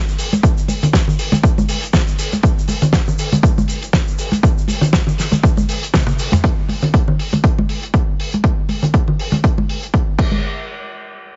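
Feel-good and groovy, this nu-disco cut moves at 120 BPM with a light 16th-note swing. A punchy, overdriven electronic kick sits up front, while a dry, damped 70s drum kit adds a fat snare, hi-hat, shaker, toms and crash, and bright, close, damped congas snap under hard hands. The opening drop runs to 6.4 seconds and closes with a drum fill from 5.9 seconds, all heard through a small room and a heavily compressed, radio-like sound that tops out at 7.8 kHz.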